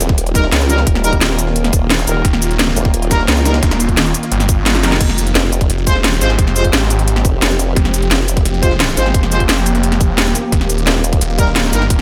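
Straight 4/4 breakbeat drive powers this tense, futuristic slice of dark technical drum and bass, where an overdriven electronic kick and an up-front kit of cracking snare, crisp hats, shaker and crash sit over a very quiet, gritty sampler-style break, while a formant-sweep wobble bass wobbles through the opening 8.4 seconds, a snarling distorted saw bass joins at 2.2 seconds, classical-style brass ensemble stabs ring out with diffuse delay, and a nasal, granular swarming drone pumps in the background as the chords move from Eb to Fm after a drum fill at 4.7 seconds.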